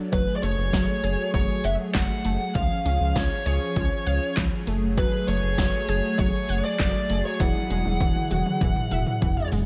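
A brassy, chorus- and phaser-treated analog pad and a bright, detuned unison pluck with tape echo open this cool, driving synth-pop excerpt, joined almost at once by a round, deep analog bass, a punchy analog drum machine re-recorded in a large room with kick, snare, handclaps, hi-hat and toms, and an up-front, smooth, dark overdriven lead guitar melody with tape echo, with a drum fill arriving at 7.4 seconds under light digital ambience.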